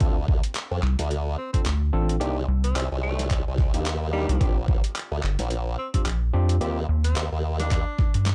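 A swaggering, playful glitch hop excerpt at 109 BPM, swung on the sixteenths in D phrygian, opens on barky, overdriven tine electric piano stabs carrying 12-bit sampler grit, sidechain pumping and dub echo. Underneath are a bright, chorused formant-sweep wobble bass, a gritty boom bap sampler-style kit of handclaps, hi-hat and snare, and a thumpy, up-front electronic kick, with both drum parts overdriven. A rubbery, hollow square bass bounces in at 0.8 s, and at 1.4 s a clear tenor saxophone solo with vibrato and scooped notes, given the same 12-bit treatment and echo, rides the Dm7, Cm9, Bb6 and Eb changes over a dry mix dusted with vinyl crackle.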